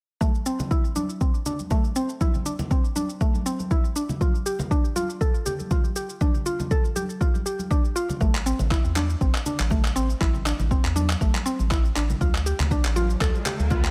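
Over a swung 4/4 groove, a deep, overdriven electronic kick sits up front, joined by layered electronic shaker and handclaps with the same distortion and bright, thin-skinned acoustic congas in this driving, spiritual afro house excerpt. A woody, mallet-like FM pluck plays chorused, delayed arpeggios with a cassette-tape tint, sidechain pumping and a filter sweep, while a round, dark analog bass, also pumping, enters at 8.2 seconds. A riser in the background arrives at 12.8 seconds, and a digital ambience surrounds the whole track.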